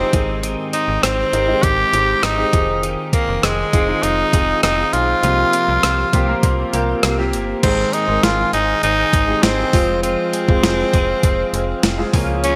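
Urgent and dramatic, this 1980s-style pop cut from a longer piece moves at 100 BPM in a straight 4/4 feel in F minor, with chords shifting from Abmaj7 through Fm7 and C7sus4 before settling on Ab and Fm. A raspy, gritty tenor saxophone carries the melody up front, forceful and punchy with a smooth top, light vibrato and a touch of delay. Beneath it, a polished baby grand piano with long sustain and subtle chorus supplies accompaniment, while a bright, compressed twelve-string electric guitar picks a clean riff in the background through an ensemble chorus. A snappy FM bass with a metallic, decaying attack anchors the low end, and from 0.1 s a sampler-style 12-bit drum machine, overdriven and thumpy, drives the groove with kick, snare, rim click, hi-hat and crash. At 7.6 s a very quiet, distant brass ensemble joins with mellow sustained chords, all set in a lush hall reverb within a bright digital production.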